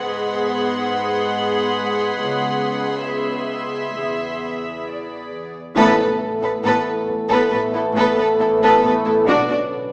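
This ominous, mysterious passage from a suspense film score opens with soft-attack string sections bowed sul tasto. A rich violin section with light vibrato carries the melody over a pure-toned viola section, while a floating cello section holds the bass. A high violin texture drifts above, and a woody marimba riff sits dry in the background. At a slow 68 BPM in a straight 4/4, the harmony moves through G#m7, C#m7 and E7, and a very quiet double bass section enters at 2.2 seconds. At 5.8 seconds the music opens into a band accent: a mellow French horn section and a bright trombone section take up sustained chords on Asus2, a second violin line joins, and a very quiet taiko ensemble arrives alongside a huge, dark impact. The phrase reaches Bmadd9 at 9.3 seconds before the cut, all heard through a wet scoring-stage reverb with a small-speaker character.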